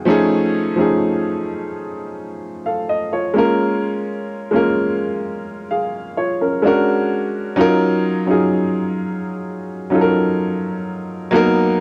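Through the soft grain of a cassette tape home recording with light reverb, a warm, natural baby grand piano sits up front and plays alone for the full 11.8 seconds of this moody, longing R&B fragment cut from a longer piece, moving from F7alt through Bbm7 and Bb7alt to settle on Ebm9.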